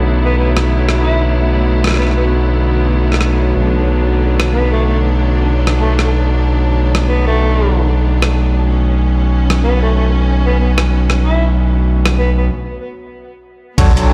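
Heard through a big sound system in a bare room with a large studio reverb, this swaggering, playful glitch hop passage sets a distant, mellow tenor saxophone melody with dub echo over bright, bowed string chords and a warbling, nostalgic tape-like pad that both pump to the sidechain, while a gritty, distorted synth bass sits up front and a compressed boom bap sampler-style kit of crash, hi-hat and rim click drives from 0.6 seconds, until a break at 12.5 seconds gives way to an impact at 13.8 seconds where a thumpy overdriven electronic kick, a background sub drop and barky tremolo electric piano stabs through a combo amp hit together.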